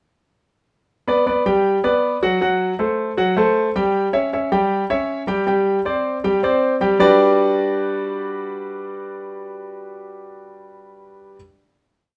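In a moderate studio reverb, a clear, intimate concert grand piano with audible action noise and deep bass plays a sunny, danceable Latin piece alone at 157 BPM in G major, entering at 1.1 seconds and running a polished piano montuno in octaves through a brief verse before settling on a final Gmaj7 chord at 7.0 seconds.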